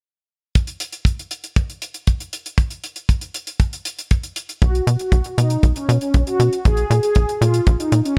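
A straight groove opens at 0.6 s with a dry, tight kick up front and a quiet, rolled-off hi-hat sitting beneath it. At 4.6 s, a punchy sawtooth sequencer bass with a fast filter pluck and tube saturation drives in alongside a round, brassy, detuned synth-brass melody that carries vibrato, chorus and analog delay. The harmony moves from Bsus2 to Bb7(no3) in this bittersweet, danceable italo disco excerpt, all set in a lush hall reverb that gives the mix a dreamy glow.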